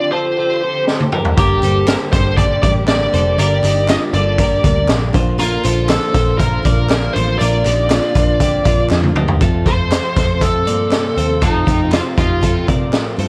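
Jangly indie pop at 119 BPM in a straight 4/4, wistful and bittersweet, cut from a longer piece and moving from D minor through G minor and B-flat before settling on F at 9.4 seconds. A bright, twangy twelve-string electric guitar rings out arpeggios from the start, while a smooth, overdriven lead guitar carries the melody up front and a very quiet, lush string section bows dark sustained chords with expressive vibrato underneath. A gritty, saturated garage drum kit with a high-tuned snare and punchy kick kicks in with a fill at 0.9 seconds, and another fill at 8.9 seconds leads into the closing stretch. Just after, a round, foam-muted electric bass and a full-bodied picked acoustic guitar, sitting in the background with audible finger squeak, fill out the low and middle range, joined by a hollow, very quiet group handclap. The whole mix carries a worn cassette character with warbly pitch drift and light reverb, lending the bright guitars a nostalgic, slightly unsteady glow.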